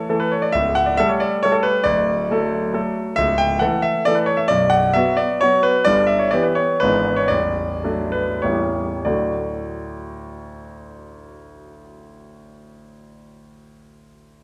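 A romantic classical triple-time dance for solo concert grand piano, this short excerpt in D major has a proud, rustic character, with dotted rhythms in 3/4 and a free, rubato feel. The tempo moves between 88 and 141 BPM, slowing from 5.2 to 9.1 seconds before a new section begins at 9.1 seconds on a return to D. The piano sounds clear, polished and up front, with a deep bass reaching down to A0, a top near G5, and short sustain. The harmony passes through A7/C#, Em/G and E7/G#, with an A7b9 leading home to D. A wet recital hall reverb and a dark production surround the playing, and the passage is cut from a longer piece, stopping at 14.4 seconds.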